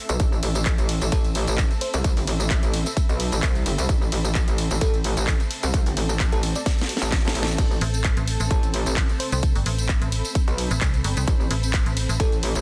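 A dense, heavily limited modern master with a digital ambience frames this bouncy, gritty bass house excerpt at 130 BPM in A dorian, swinging its 16ths over a single Amadd9 chord. A punchy electronic kick sits up front with a house kit of cracking snare, handclaps, hi-hat, tambourine, ride and crash, tape-warm and re-recorded in a small room, with a drum fill from 6.7 to 7.6 s. A saturated, overdriven wobble bass with chorus and sidechain pumping wobbles beneath a cloudy, evolving granular pad, while a sparkling FM electric piano with phaser and delay drifts in the background and a decaying metallic FM bass joins at 7.8 s.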